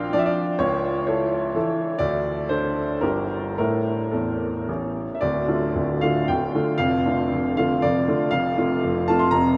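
The recording is bathed in a huge, wet reverb that places the music in a vast, echoing space, with each note trailing off in a long, lingering decay. A bright grand piano plays alone and sits up front, its brilliant, open tone ringing clearly through the haze of the room. This is a romantic classical dance in triple time, built on dotted rhythms and played with a flexible rubato that gives it a capricious, wistful character. The piano covers a broad range, from deep bass notes to sparkling upper tones. Around 5.2 seconds the music moves into a new section that settles into darker minor harmony before turning toward a brighter chord near the close of this short passage cut from a longer piece.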